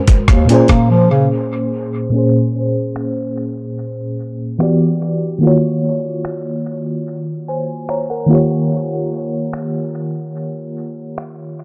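A straight 4/4 pulse at 73 BPM in Bb minor drives this late-night, longing contemporary R&B excerpt: a gritty, compressed sampler-style drum kit of thumpy kick, finger snaps, hi-hat and rim click and a dark, full-bodied FM electric piano with tremolo, both soaked in dub echo, sit up front in an echo-heavy, low-passed mix with little reverb, while a mellow, smooth-topped bass clarinet plays a brief classical-style solo from 0.3 to 1.3 s before a break and a filter sweep from 2.1 s carry the chords from Bbm7 through Em7 and Ebm7 to Eb7.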